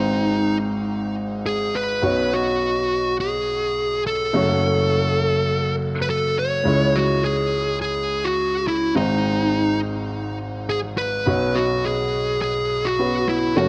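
A straight 4/4 pulse carries this short pop fragment, cut from a longer piece and running about 13.7 seconds, with a dramatic, nostalgic mood. A dark, fuzz-laden electric lead guitar, picked and sitting up front, carries the melody in a compact middle register, its distortion trailed by digital delay. Beneath it, a warm, natural baby grand piano provides the accompaniment, also placed up front and spanning from deep bass notes up to the guitar's upper reach. Both parts play together from start to finish as the harmony moves through G#, Bsus2, F#m and C#m before returning to G# and Bsus2. A moderate concert hall reverb gives the pair a spacious, lingering ambience.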